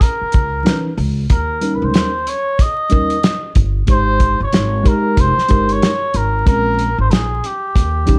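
A cup-muted trumpet carries the melody up front, its soft, veiled tone touched with vibrato in a mellow jazz style, over a relaxed jazz-hop groove at 93 BPM with swung sixteenths. A cloth-damped, thuddy drum kit with a tight kick and rolled-off top sets the pulse from the start, a woody pizzicato upright bass joins at 0.2 seconds, and a worn, slightly out-of-tune tine electric piano enters at 0.6 seconds, moving through chords from Dbm9 to Bbm9. The dark, warm production sits in a small room with a layer of vinyl crackle, in this short section cut from a longer piece.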